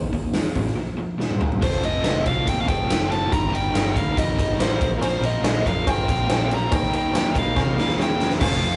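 A huge arena drum kit sits up front, its punchy kick and fat snare driving this gritty classic rock excerpt at 141 BPM in a straight 4/4, with drum fills along the way. Underneath, a dark, round fingered bass growls with fuzz. Two overdriven guitars play riffs in the background, one crunchy and the other carrying tremolo. At 1.6 seconds a biting lead guitar enters with an overdriven melody trailed by digital delay, over chords moving from Fadd9 through Eb/G and Bbsus2 to Eb. From 5.0 seconds a very quiet, shouting tonewheel organ adds sustained chords with key click and rotary speaker, joined by a metallic cowbell in the background, all set in a moderate small-room reverb with a rough rehearsal-room sound, tube saturation and a dulled top end.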